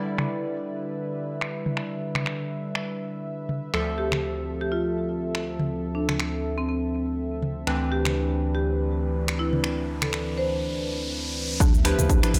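Hypnotic and driving, this afro house excerpt at 122 BPM in a swung 4/4 opens with a smooth, detuned analog pad and round, wave-folded analog keys stabbing through chorus, sidechain pumping and digital delay over an afro-pop kit of cabasa, finger snaps, metallic hats and filtered toms. A dark marimba melody with hard mallets and delay enters at 4.0 seconds, and an electronic riser builds from 9.3 seconds until a punchy, tape-kissed kick, a deep, boomy 808-style bass and a woody, warbling FM pluck arrive together at 11.6 seconds on a Dm69 chord, all set in light reverb.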